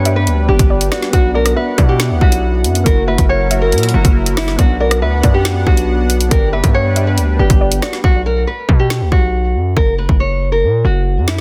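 A saturated, heavy distorted 808-style bass and an up-front drill kit with a hard-clipped kick and woody snare drive this ominous, tense half-time drill excerpt beneath a small, fingerpicked nylon-string guitar melody, a dark pluck in the background, mellow electric-piano-like synth keys and a smooth, detuned analog pad; the pluck, keys and pad drop away by 8.1 seconds as the hi-hats fall silent, leaving guitar, bass and drums to carry on to 11.4 seconds in a dry, dense, heavily limited mix.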